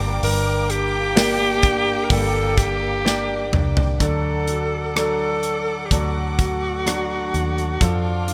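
A raspy, gritty alto saxophone with vibrato and delay carries the melancholic, longing melody up front in this 63 BPM pop ballad, entering at 0.2 s over a clear, polished baby grand piano with lush chorus, a woody bowed string section holding sustained chords, a full-bodied fingerpicked acoustic guitar playing arpeggios in the background, a dark, round foam-muted electric bass, and a tight modern drum kit with rim click and toms that plays a fill from 3.1 to 4.0 s as the harmony moves from Gm to D, set within a plate reverb and a bright 1980s-style digital production.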